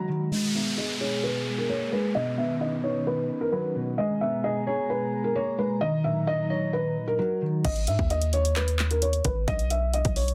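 A felt-muted upright piano carries the melody throughout this dark, menacing trap excerpt, its soft, intimate tone given short sustain, a low-pass filter and a digital delay. Alongside it, a clean, compressed electric guitar supplies filtered accompaniment, while an airy, breathy pad with chorus holds sustained chords further back, all moving through G#madd9, Badd9 and D#m under a filter sweep that runs from 0.3 to 7.6 seconds. A downlifter effect sits in the opening stretch, which begins after a brief break. At 7.6 seconds the guitar and pad stop and the beat drops at 131 BPM in a half-time feel, with a deep, boomy 808-style bass and an overdriven electronic kit of hard-clipped kick, bright hi-hats, handclaps and crash pushed up front. The mix is dry and densely limited, keeping the piano and low end close and heavy.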